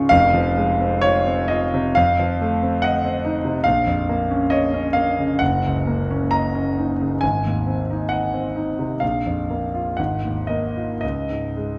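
A concert grand piano plays alone, its sound up front, smooth and vintage with a deep bass, in a dreamy, serene romantic nocturne played with rubato in 4/4 at roughly 54-73 BPM. The harmony moves from F minor through F7, B-flat minor and E-flat minor seventh toward A-flat, then settles through open and suspended chords onto D-flat. A lush recital hall reverb surrounds this short fragment of a longer piece, which runs about 11.8 seconds.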